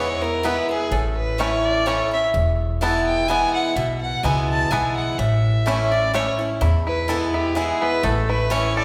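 Set in the lush reverb of a church or concert hall, this short bluegrass excerpt moves in a swung 3/4 at 126 BPM with a rustic, virtuosic mood, shifting between E and A chords and turning to a new section at 6.6 seconds. A rich, smooth fiddle carries the melody up front with light vibrato alongside a twangy, fingerpicked banjo sitting further back in the mix. Underneath, a bright, boxy swing-style acoustic guitar picks the accompaniment while a woody pizzicato upright bass anchors the low end.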